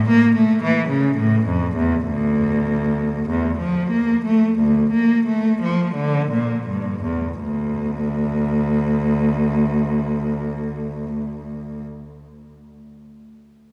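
A single bowed cello, clear and focused with vibrato, opens this introspective, solemn excerpt from a baroque-style suite movement in D minor. It plays in 4/4 at a rubato 40-56 BPM, slowing through the first 7.4 seconds, moving within a low register, and stopping at 11.9 seconds. The close, up-front cello sits in a long cathedral reverb alongside small room ambience.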